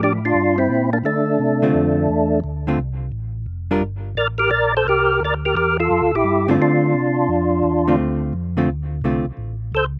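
A bluesy, late-night jazz excerpt in D minor opens with three parts together: a fat, lightly overdriven tonewheel organ carrying the melody up front, a hollow-body electric guitar comping beside it, and a mellow tonewheel organ holding down the bass. The lead organ has audible key click and third-harmonic percussion, coloured by chorus vibrato, a slow rotary speaker and a short slapback echo. The bass organ is round, dark and clean, with the same chorus vibrato and slow rotary turning. The picked guitar has a clean, up-front hollow-body tone with its own slapback. It drops out at 3.8 seconds and returns at 6.5 seconds. At a swinging 172 BPM in 4/4, the harmony moves between Gm7 and Dm7 before landing on a tense A(#9) at 9.4 seconds, all in a dry, open-air sound with little reverb.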